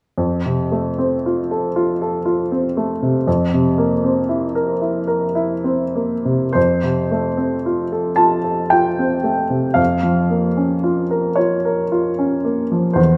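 Nostalgic and tender, this brief excerpt from a longer romantic nocturne unfolds in a slow, freely breathing three-beat pulse on a solo baby grand piano. The worn, up-front instrument spans a range from deep bass to the upper middle register, its tone carried by a moderate recital hall reverb. Around 6.6 seconds the music moves into a second section, where a minor-tinged chord over an F bass at 9.8 seconds adds a bittersweet shading.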